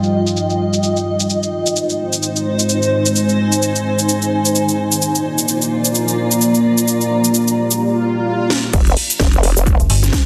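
A dark analog pad and a granular cloud pad open this gritty, bouncy bass house excerpt at 129 BPM, the analog pad's sustained chords and the cloud pad's texture pumping against the sidechain over a swung house drum kit with a cracking snare and metallic, filtered hats and shaker. The analog pad is deep and moody, thickened with chorus, while the cloud pad is blurred and evolving, steeped in its own reverb. Harmony moves from Ebadd9 to Ab and then Bb as an electronic swell enters at 7.9 seconds, and a drum fill at 8.5 seconds leads into the drop at 8.7 seconds. There a punchy, overdriven electronic kick arrives with a nasal vowel-sweep wobble bass on F1 over an Fsus2 chord, saturated and up front. A short metallic FM bass takes over at 9.8 seconds, digital and decaying. The mix is dense and heavily limited, wrapped in a lush hall reverb.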